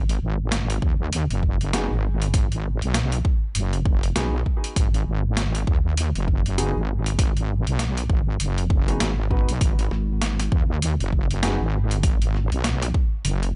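A heavy, detuned sawtooth wobble bass with chorus and tube saturation sits up front in this gritty, swaggering, swung glitch hop cut, joined by a punchy, tape-warm electronic kick, an overdriven sampler-style kit of hi-hat and high-tuned snare with studio reverb, and boxy, mellow baby grand piano stabs with sidechain pumping and delay from 1.7 s, while a nasal, formant-filtered vowel-sweep wobble bass surfaces briefly from 9.9 to 10.5 s over a single G#m7 chord in a dry mix with rolled-off highs.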